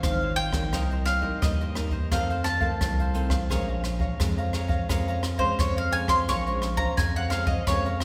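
A bright, picked bowl-back mandolin leads this lively, nostalgic samba and choro excerpt in Bb minor at 86 BPM, its double strings sitting up front as it carries the melody from C5 to Db6 across the whole passage. Beneath it, a crisp cavaquinho and a fingerpicked classical nylon-string guitar with fresh strings fill out the accompaniment in a straight 4/4 feel. A deep, thick saturated sub bass with a sine-like tone and fast attack holds sustained low notes between Ab1 and F2. A jazz brush drum kit, airy and polished with a boomy kick, adds hi-hat, kick and rim click, placed up front. The harmony moves from Dbmaj9 to Cm7, then F7 at 2.1 seconds and Bbm7 at 3.5 seconds, all wrapped in a wet church reverb that lends the short cut a spacious, hall-like glow.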